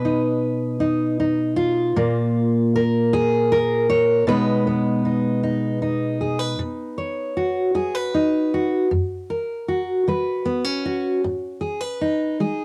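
A full-bodied, jumbo-bodied steel-string acoustic guitar, fingerpicked and up front, opens this gentle, peaceful solo folk fragment in 6/8, moving through a G#m/B colour before settling onto B, F# and G#m in its second half from 6.6 seconds. The guitar ranges from F#2 up to C#5. A home cassette recording with moderate studio reverb lends the playing an intimate, homespun character.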